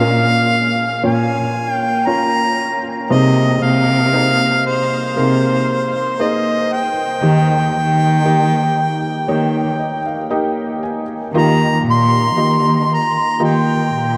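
The harmonica leads this intimate, melancholic acoustic folk-pop ballad, carrying the melody up front with a light vibrato and a jazz-inflected phrasing that sits between C5 and C6. Beneath it, a felt-muted upright piano plays soft, mellow accompaniment, its thin felt and audible action noise lending a close, private quality. A single bowed cello holds the bass with a nasal, boxy tone, its vibrato and portamento making each note expressive. The slow 58 BPM pulse in straight 4/4 moves through Bbm, Abadd9/C and Eb before settling onto Ebadd9 as a new section begins at 11.3 seconds. A huge, wet ambient reverb with a 7.9-second tail places the trio in a vast, echoing space, and the recording is cut from a longer piece.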